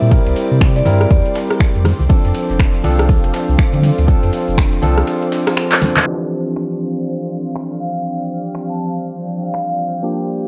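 This relaxed, sunny deep house excerpt at 121 BPM with swung 16ths opens on a barky, up-front tine electric piano stabbing over C7 and F6 chords with pumping and analog delay, a hard-mallet vibraphone melody that rings brilliant through its own delay, a round sine sub bass, a grainy egg shaker, an airy, breathy pad with chorus and phaser, and a very quiet, shimmering string machine of violins, soon joined by an overdriven electronic kick, a deep house kit of finger snaps, handclaps, metallic hats and rim clicks, a gritty sampler-style soul kit of hi-hat, ride and snare, and background congas, before a drum fill and band accent lead at 6.1 seconds into a filter-swept Dm11 passage where a warbling, wistful tape-like pad with 12-bit grit carries the sustained chords and the vibraphone returns, inside a dark, lightly reverberant mix.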